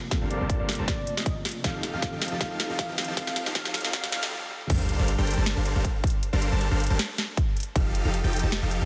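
Huge, detuned supersaw chords drive this dreamy, emotional future bass excerpt, pumping against a deep, boomy 808-style bass and a punchy electronic kick, while a trap kit with a sharp snare and bright hats sits up front in half-time with a light swing. The opening build-up layers a soft, felt-muted upright piano with audible action noise, a very quiet ethereal pad, and a velvety synth lead with chorus and vibrato, as a filter sweeps across the supersaws and a drum fill, riser and sub drop gather momentum. After a brief stop, the drop lands at 4.7 seconds with an impact, carried by the supersaws, bass and drums over Gm11 and F7 chords in a dense, heavily limited mix with light reverb.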